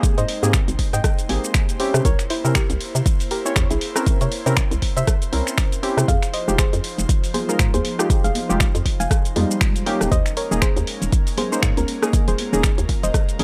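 An overdriven electronic kick sits up front in this hypnotic, deep house excerpt, its deep, layered punch re-recorded in a small room and carrying a swung sixteenth-note feel. Around it, a gritty deep house kit of finger snaps, hi-hat, rim click and shaker shares that small-room overdrive, while a hollow, bouncy FM bass knocks underneath with sidechain pumping. Round, detuned analog keys play short sawtooth stabs with a filter sweep, chorus, vintage 12-bit sampler grit and the same pumping, over chords moving from Abmaj9 through C7b9 and Fm9 to Eb7sus4. A soft, gentle pluck with a dark tone carries the melody through chorus and analog delay, as an airy, breathy pad with a noise layer holds sustained chords in the background. At 7.3 seconds, bright, high-tuned congas with a thin, band-limited skin join far back in the mix, all in a dry, close space.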